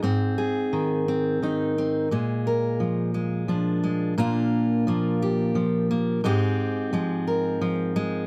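A bright, full-bodied fingerpicked steel-string dreadnought plays alone and up front in light reverb throughout this intimate, haunting folk fragment in 3/4, moving from Ab to Bb7 and then from Bb to Fmadd9/Ab over about 8.3 seconds cut from a longer piece.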